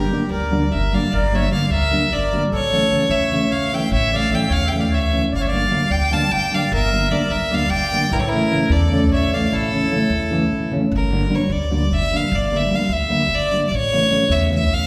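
Set in a brisk, straight 7/8, this Balkan wedding-band piece is cut from a longer work and carries a bittersweet, virtuosic mood. The chords sway between G minor and A throughout. A single bowed fiddle leads the melody up front, its clear, biting tone touched with light vibrato and an earthy edge. A reedy accordion plays a second line beneath it, its slow beating adding warmth, until it drops out at 10.7 seconds. A dark, full-bodied nylon-string guitar supplies thumb-plucked accompaniment, while an upright bass on gut strings anchors the bottom with woody, thumpy pizzicato. The ensemble sits in a recital-hall reverb with a 1.7-second decay, giving the fast dance a resonant, churchlike space.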